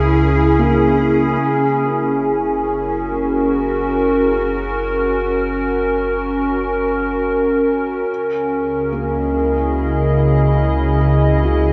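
Luminous and serene, this ambient excerpt drifts at 72 BPM in F# mixolydian. A morphing, warbling wavetable pad sits bright and up front with chorus, holding sustained chords over a deep, round sub bass while the harmony moves from C#m to F# and on to C#madd9. A breathy, flute-like synth lead with vibrato and tape echo sounds a brief G#4 in the background until 1.0 seconds, and a muted felt upright piano with audible action noise enters at 0.6 seconds with tape-echoed arpeggios, fading in alongside the bass from 1.4 seconds, all within a vast, echoing cathedral reverb.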